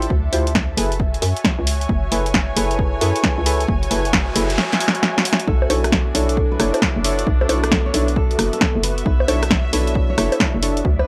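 This excerpt opens with a skippy, late-night two-step garage groove at 134 BPM in B dorian, where a punchy analog drum machine of bongos, hi-hat, rim click and snare sits up front beside a tape-warm electronic kick and a hollow, bouncy FM bass with tube saturation. Deep, mellow chord stabs with chorus and analog delay move from Dm11 to F#m11, while an airy, breathy pad and a dark, woody string section with light vibrato pump softly underneath. Between 4.2 and 5.5 seconds a background noise sweep passes, joined by a drum fill from 4.6 seconds. At 5.5 seconds the harmony settles on Bm11 and a fingerpicked nylon-string guitar enters in the background, its classical melody trailed by analog delay. The dry, gritty hardware sound carries only light reverb, keeping the swung sixteenths close and tactile.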